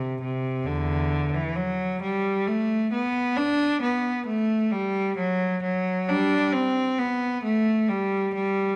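Set in a moderate recital-hall reverb with a 1.3-second tail and a dark, warm production, this solemn, introspective baroque-style suite movement for unaccompanied cello unfolds at a rubato 67 BPM in 3/4. A single up-front bowed cello, rich and focused with vibrato and a smooth top, ranges from E2 to D4 as the music moves from E minor to G major at 3.4 s.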